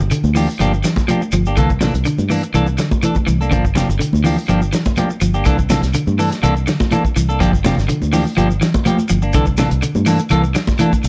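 A light studio reverb wraps this short afrobeat excerpt, cut from a longer piece, at a steady 124 BPM in straight 4/4. The mood is defiant and hypnotic, sitting in G dorian as the harmony sways between Gm7 and C13 every couple of seconds. Up front, a round, foam-muted fingered bass anchors the low end, while a clean, picked electric guitar snaps out stabs beside it. A second guitar at the edge of break-up, slightly gritty and lightly coated in subtle chorus and tape echo, spins arpeggios from 0.1 s. The soul drum kit is dark and smooth with a rolled-off top, pairing a tight kick with a medium-tuned snare and hi-hat. A grainy, compressed shekere and bright, thin-skinned congas played with soft hands in the background fill out the percussion, the shekere running through to 11.1 s and the congas to 10.9 s.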